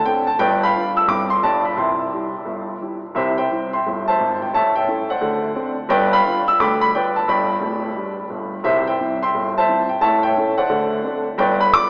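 A solo upright piano opens this exuberant, playful stride jazz excerpt in C major, swinging at 174 BPM in 4/4 and ranging from deep D1 bass notes up to E6. The piano's woody, natural tone sits up front, yet a cathedral-like reverb with a five-second tail fills a church-sized space around it, all filtered through a lo-fi AM radio character. The harmony cycles through G7, C and G before turning to a run of A7, D7 and G7 that returns near 10.0 seconds, carrying the passage to its cut at 11.9 seconds.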